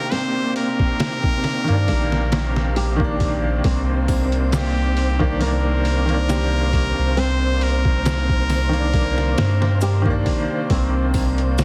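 A nasal, straight-muted trumpet plays a jazz-style solo with tape echo over a worn, slightly detuned upright piano with tremolo and echo, lush bowed strings carrying vintage 12-bit sampler grit, and fingerpicked nylon-string guitar with finger squeak, opening this smoky, dark trip hop excerpt in C minor at 68 BPM on a Cm7 chord; a gritty, pitched-down sampler-style drum kit with a thumpy kick and studio reverb comes in at 0.1 seconds, a deep, round dub sub bass sits up front from 1.7 seconds, and triangle and maracas join in the background at 4.1 seconds, the whole mix heard through a heavily compressed radio sound in a small room.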